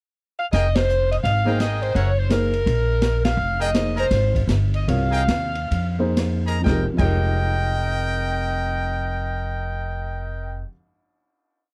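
Swung 4/4 carries this brassy, sultry big band swing piece, where a woody, growly upright bass plays a two-feel under a dark, boomy-kicked drum kit keeping a backbeat and ride cymbal pattern, a bright saxophone section with light vibrato and slapback echo states a four-part block-voiced motif melody, a trumpet section adds soft-attacked, close-voiced syncopated stabs, and a mellow baby grand piano enters at 1.5 s with quartal comping, all slowing from 3.4 s into a final chord at 6.7 s in a dry, close 1970s-style studio sound.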